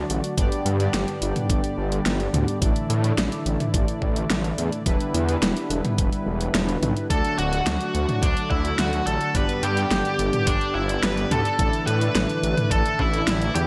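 A distorted, high-gain lead guitar stands out, entering at 7.1 seconds to carry the melody up front, its picked tone coloured by tape echo. This romantic, uplifting synthwave excerpt moves at 107 BPM in a straight 4/4, built over a chord progression of G, Asus4, Em7 and D that returns to G and Asus4. Beneath it, a thick, lush detuned saw bass with chorus sits forward in the mix, while a brassy analog pad with soft attack, vibrato and sidechain pumping holds sustained chords in the background. Nasal, dark analog synth brass plays stabs through chorus and delay, adding a bold edge to the harmony. The drums combine a knocking, overdriven electronic kick with an up-front pop kit of fat snare, hi-hat and toms, treated with gated reverb and re-recorded in a small room, all set in a light overall reverb.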